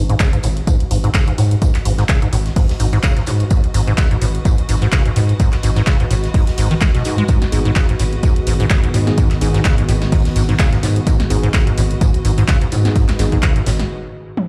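Acid house at 127 BPM in G# minor with a 16th-note swing, driving and raw, built on a squelchy, resonant square-wave acid riff under a filter sweep, with analog chorus, tape echo and sidechain pumping, over a thick, tube-saturated sine sub bass and an overdriven electronic kick sitting up front. A punchy, overdriven analog drum machine of handclaps, hi-hat, snare and toms is layered with an airy, polished acoustic kit with a high-tuned snare and tambourine in the background, while a smooth, bowed chamber string section fades in throughout. Clean tine electric piano stabs with tape echo arrive at 7.5 seconds, followed by a warbling, nostalgic lo-fi pad at 8.0 seconds, all in a large, reverberant bare room before a break at 13.9 seconds ends this cut from a longer piece.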